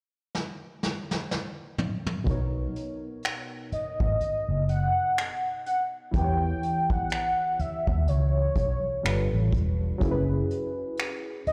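A brush drum kit opens this tender, smooth contemporary R&B excerpt with a fill at 0.3 s, its snare, toms, kick, hi-hat and finger snaps carrying a vintage 12-bit sampler grit and a rolled-off, up-front acoustic sound in a lightly swung sixteenth-note 4/4 groove. At about 2.2 s, mellow, detuned sawtooth analog keys with chorus and a filter sweep arrive alongside a dark, foam-muted fingered electric bass that sits round and punchy at the front of the mix. The harmony moves from Bmaj7 through Em6 and G9 before settling on F#7sus4. At 3.7 s a velvety synth lead enters high above, blending sawtooth and triangle tones with vibrato, chorus and digital delay into a sustained, singing melody. The whole is heard with small-room ambience and a large studio reverb, as if played on a big sound system in a bare room.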